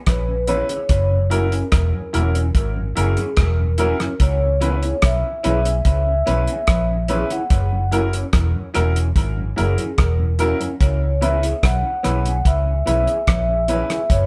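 A ringing, soft-mallet vibraphone with slow motor vibrato carries the melody in this meditative, serious roots reggae excerpt at 73 BPM in C# dorian, swaying between C#m7 and F#7. Up front, a dry, cloth-damped drum kit with a tight kick, hi-hat and rim click sits alongside a round, foam-muted vintage electric bass. Further back sit a mellow tonewheel organ with chorus vibrato and slow rotary speaker and a clean electric guitar with phaser and dub echo, while a woody, slightly detuned upright piano plays stabs through dub echo, all filling out a live-room sound with light reverb.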